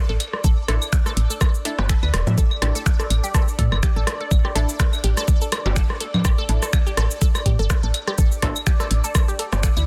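A dense, heavily limited mix in a digital ambience opens this hypnotic, sparse minimal techno excerpt at 124 BPM, swung on the sixteenths and sitting on a single Asus4 chord. An up-front, overdriven electronic kick knocks beneath a soft, woody FM bass with tube saturation, while a booming analog drum machine with metallic hats, cabasa and finger snaps joins electronic claves, rim click, bongos and congas carrying dub echo, both re-recorded in a small room. A squelchy, resonant blip pluck with phaser and digital delay carries the riff between E4 and E5, as a muted dub chord stab with lush chorus enters at 0.7 s and drops out at 8.5 s over a blurred, evolving granular cloud pad held far back.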